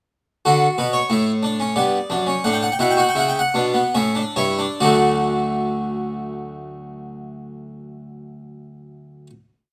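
A plucked Flemish-style harpsichord, full and brilliant with three sets of strings, carries this short baroque-style fugue on its own, placed up front and heard through close, detailed microphones. The mood is joyful yet stately, moving in a straight triple metre as the three voices weave in imitative counterpoint across a span from D2 to G5. The brief exposition runs from 0.5 to 4.8 seconds, passing through a harmony that leans on a suspended dominant before settling onto its resolution, while the pace gradually slows until about 6.2 seconds. From 4.8 seconds a final chord rings out, the harpsichord's sound ending at 9.3 seconds. A moderate stone-room reverb lends the instrument a resonant, airy halo as the last notes fade.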